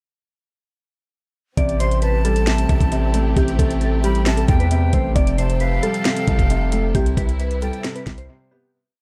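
Hip hop in a trap vein, this short, complete piece sits at 134 BPM with a half-time feel in A minor, its mood eerie yet hard-hitting. At 1.6 seconds nearly the full arrangement arrives together: a trap drum kit with a knocking kick, sharp snare and metallic hats, up front with a vintage sampler grit, bouncing on sixteenth-note hats and fast hi-hat rolls, while a deep, long 808-style bass holds sub notes that follow the kick. Glassy digital keys carry a looping melody treated with chorus, a filter sweep and dub echo, above a felt-muted upright piano playing a mellow, intimate eighth-note arpeggio repeated like a sampled loop. A lush bowed string section sustains chords as a pad with vibrato, and at 1.8 seconds a breathy jazz flute with a chiffy, unsteady straight tone enters, adding a sparse counter-melody soaked in dub echo. The harmony moves from Am7 to Fadd9 at 5.2 seconds and Cmaj7 at 6.9 seconds, where a fade-out begins, with drums and bass dropping out at 8.3 seconds for a brief break in a small, echo-heavy room.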